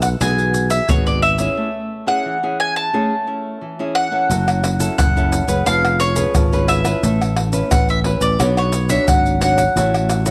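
A straight 4/4 samba-and-choro groove at 88 BPM, lively and sunny, opens this cut from a longer piece, with close, dry percussion of tube shaker, pandeiro, tight surdo and tamborim up front beside a growly, amped sustaining fretless electric bass, while a bright, double-strung bowl-back mandolin carries the melody over a small-sounding fingerpicked nylon-string guitar, passing through a break from 1.6 s and moving from A major to F# minor at 4.3 s, set in light reverb and small room ambience.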